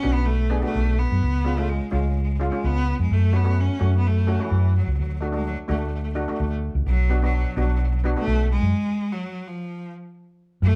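Tense and dramatic, this short calypso cut from a longer piece moves in a straight 4/4 over minor-leaning changes, with a clear, boxy bowed cello carrying the melody with intense vibrato. Cello pans struck with hard rubber sticks add a shimmering, metallic accompaniment until 8.7 seconds, when the band hits a stop, leaving the cello and bass to ring on. Up front, a round, punchy hollow-body electric bass played with the fingers anchors the low end, and the live room sound carries light reverb.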